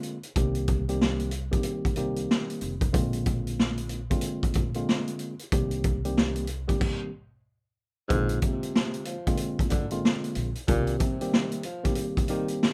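A dry, rough home-demo mix carries this moody, tough boom-bap hip-hop excerpt, where a gritty, boomy garage drum kit sits up front over a worn, slightly out-of-tune tine electric piano and a woody, growly pizzicato upright bass, before a brief stop at 6.8 seconds gives way to a smooth-topped tenor saxophone soloing in jazz style with subtone, vibrato and scooped notes from 8.1 seconds.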